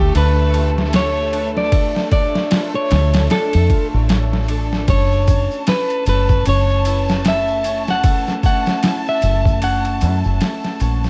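Trip hop with a smoky, melancholic mood, this short excerpt from a longer piece rides a swung groove in 4/4. A dark, slightly broken-up electric guitar carries the melody up front, soaked in dub echo, and drops out at 10.2 seconds. Underneath, a round, punchy fingered bass and a compressed, pitched-down, overdriven boom bap drum kit with a thumpy kick, ride cymbal and medium-tuned snare anchor the sound. A distant, lush violin section holds sustained chords with expressive vibrato and a vintage sampler grit, while a ringing concert harp plays delayed arpeggios. A tube shaker and group handclap join quietly in the background at 4.9 seconds as the harmony shifts from D minor to F sharp minor seventh. Worn, warbling cassette tape, vinyl crackle and a small room ambience colour the recording before it fades out from 9.1 seconds.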